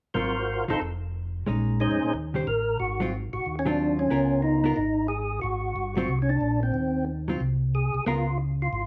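A percussive tonewheel organ carries the melody between C4 and C5, its fat, lightly overdriven tone marked by third-harmonic percussion, key click and chorus vibrato, turned through a slow rotary speaker and set in plate reverb. This is a bluesy, swinging soul jazz organ trio at 182 BPM in 4/4, with 64% swing on the eighth notes, in Ab mixolydian. Beneath it, a second tonewheel organ plays the bass from F1 to Bb2 with a smooth, clean sound through a stationary speaker, also with chorus vibrato and key click. A dark, compressed hollow-body electric guitar, picked and clean, supplies accompaniment until 8.3 s. The harmony moves from Ab13 through a brief chordless stretch to Bbm11 and Eb6, and the second section from 2.8 s turns through Ab6, Db13 and Ab9. All three parts sit up front within a roomy studio ambience heard from further back, and the passage is cut from a longer piece.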